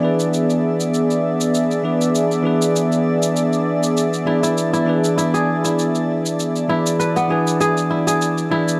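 A shaker with an electronic, tape-warm sound comes in at 0.2 seconds over a gently swung sixteenth-note feel at 99 BPM in 4/4. This meditative, earthy piece of organic downtempo rests on a single E7 chord, cut from a longer piece. A bell-like tine electric piano plays clean, direct accompaniment up front through a digital delay, while a warm analog pad holds smooth, detuned sawtooth chords with a slow attack and chorus. A crisp, fingerpicked kora adds ringing arpeggios, also delayed: it is heard only briefly at the start, then returns at 4.3 seconds and carries on to the end. Far behind, a glassy sine texture drifts with calm overtones, long release and its own reverb, and a huge ambient room with a seven-second tail surrounds the whole mix.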